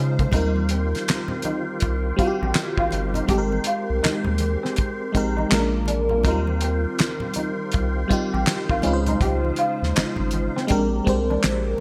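An FM electric piano with a soft, dreamy pad layer, chorus and phaser opens this relaxed 81 BPM neo-soul R&B excerpt in Eb major alongside a round, deep analog bass, a clear tonewheel organ holding sustained chords through a slow rotary speaker, and a bright, slightly broken-up electric guitar with a twangy second line, before a cloth-damped, thuddy drum kit with a fat snare, tight kick, hi-hat and handclaps enters at 0.2 seconds and very quiet, low-tuned congas follow at 0.3 seconds, all swung on the sixteenths over lush chords such as Eb69, Abmaj9 and Dbmaj9 within moderate plate reverb and bright 1980s-style digital production.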